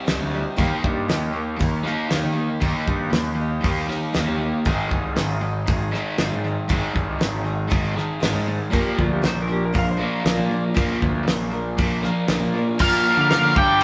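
Recorded as a band playing live in a small stone room, this swaggering, brooding classic rock cut from a longer piece rolls at 118 BPM over Cm, Eb, Ab and Bb, with a dry, up-front 70s drum kit of fat snare and tight kick, a growly fuzz bass, a crunchy phaser-tinged electric guitar and a sludgy distorted guitar in the background sharing the riff, a boxy parlour acoustic picking underneath, a clean lap steel adding slide volume swells from 8.7 s, and a pair of dark octave-fuzz lead guitars entering at 12.8 s.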